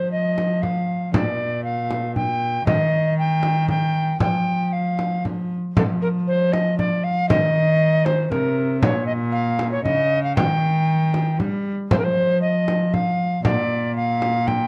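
A classical, renaissance-style consort dance in triple time, festive yet stately and cut from a longer piece, in which a pure, woody alto recorder with vibrato and a soft attack carries the melody over a single bowed cello playing a period-style bass with a gut-string tone, joined at 0.4 seconds by a frame drum struck with hard hands in a live room, tuned to A4 = 445 Hz and set in light reverb within a dark, warm production marked by lossy compression artefacts.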